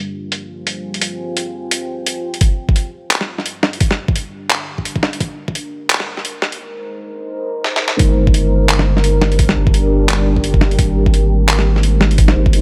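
A dark, spacious mix with light reverb opens this half-time drum and bass excerpt at 172 BPM in G phrygian, where a deep, moody detuned sawtooth pad with chorus, 12-bit sampler grit and sidechain pumping sustains chords from Fm through Gm and Ab, gritty pitched-down boom bap drums with handclaps, filtered hi-hats and a medium-tuned snare sit up front from 0.3 seconds, a knocking, tape-warm electronic kick enters at 2.4 seconds as a filter-swept build-up leads into a drum fill, and a thick, saturated sine sub bass joins the returning kick for the drop at 8.0 seconds.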